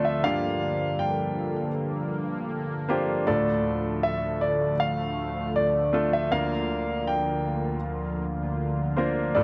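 In a straight 4/4 pulse, this short fragment of a longing, heartbroken pop ballad moves from Gm7 to Dm to Bb/D, with a concert grand piano carrying an up-front melody between C5 and G5, rich in deep bass and long sustain. A second grand piano supplies natural, clear accompaniment beneath it, while a sweeping, resonant pad of detuned sawtooth, triangle and sine layers with a sub octave holds bright sustained chords through chorus, a filter swell and a slow attack. A recital hall reverb and small room ambience surround the parts, and a worn cassette tape sound adds warbly pitch drift over the whole 9.4 seconds.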